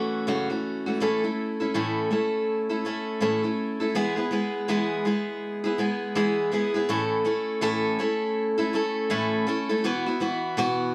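Sunny and carefree, this short pop excerpt features a lone picked steel-string acoustic guitar, played with a light sixteenth-note swing and moving through F#m7, A, E and on to a Bsus4 near 9.8 seconds. The guitar sits up front with a warm, auditorium-sized body, and a finger squeak adds a close, human touch. A wet small-room reverb gives the sound a snug, intimate space.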